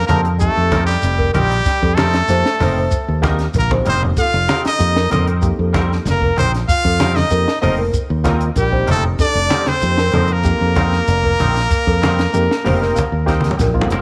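Afrobeat with a driving, funky, straight feel, this cut from a longer piece rides on a punchy, round fingered electric bass up front and a dry compact cocktail drum kit with a high-tuned snare, backed in the background by low-tuned congas and a grainy shekere over an F9sus4 chord. A brilliant trumpet carries the melody up front with light vibrato while a trombone plays a second line further back, and a delicate, bell-like celesta adds arpeggios alongside clean, twangy electric guitar stabs with analog chorus. A barky reed electric piano with overdrive and fast tremolo supplies accompaniment under light reverb; drum fills land at 3.5 and 13.0 seconds, and the electric piano adds its own fill from 12.3 seconds.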